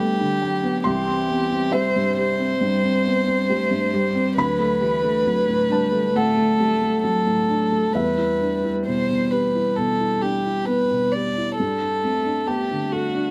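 The recording has light reverb, and the felt-muted upright piano sits up front, its intimate, boxy, mellow tone carrying audible action noise. This short passage from a longer neoclassical piece for piano and strings moves at 67 BPM in 4/4 with a rubato feel, in E minor, and its mood is melancholic and full of longing. A single bowed violin carries the melody between F#4 and D5, played sul tasto with a soft attack and light vibrato, its warm, close tone set in plate reverb. One cello plays a second line in the background between E3 and A3, also sul tasto, with a pure, floating quality and a smooth top. Underneath, the dark, soft piano accompaniment spans C2 to C6 as the harmony moves from Gadd9 through C, D and Em before returning to Gadd9 at 11.6 seconds.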